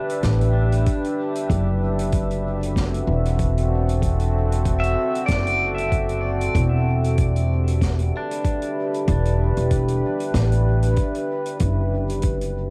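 A deep, moody sawtooth pad holding sustained Em7 and F#m7b5 chords with chorus and reverb opens this meditative, spacious ambient dub excerpt in E minor at 95 BPM with a light 16th-note swing, joined at once by bright, twangy pedal steel guitar arpeggios with slide, volume swells and tape echo until 10.3 seconds, while a woody, up-front pizzicato upright bass with tube saturation, a muffled, thumpy pitched-down electronic kick and a distant, roomy soft-mallet kit of hi-hat and snare carry the groove, all captured in a home cassette recording with light reverb.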